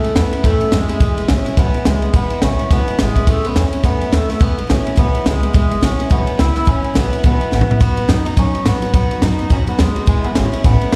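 A rowdy, upbeat rockabilly cut opens with the full band at once: a compact cocktail drum kit sitting up front with a punchy kick, high-tuned snare, dark cymbals on the ride and a dry sound, alongside a thumpy, woody upright bass plucked on gut strings. Over this swung groove, an electric guitar through a small old amp carries the melody with a twangy, slightly broken-up bite, soaked in spring reverb, slapback echo and tape echo. A bright dreadnought acoustic guitar, picked with audible finger squeak and touched by its own slapback echo, fills in the accompaniment beneath it. The harmony moves between A and E before shifting to B and resolving back to E, and the drums break into a fill at 7.5 seconds. The whole thing sounds like a live gig heard through the venue's PA, carried in recital-hall reverb, and it is a short cut from a longer piece.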